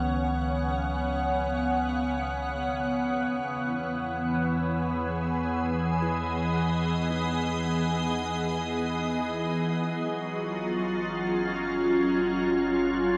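Bathed in a cavernous cathedral reverb, this luminous, weightless ambient fragment in free time is carried by an up-front, organ-like pad of pure, detuned, chorused tone holding sustained chords through a filter sweep until 9.9 seconds, while a very quiet, bell-like tine electric piano traces clean arpeggios until 11.4 seconds and a deep, round sub bass fades out beneath.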